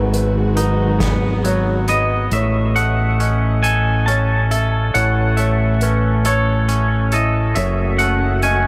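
Opening on a dark, bowed string section holding sustained chords over a felt-muted upright piano, twangy picked electric guitar arpeggios and a growling overdriven fingered bass up front, this cinematic, euphoric post-rock excerpt at 46 BPM in 6/8 moves from G#m7 to A and F#m beneath a distant soft-mallet drum kit, while a second twangy, scooped guitar melody enters at 1.9 seconds, both guitars and the piano carrying analog delay, the strings returning at 7.6 seconds, all bathed in a huge, dreamy ambient reverb.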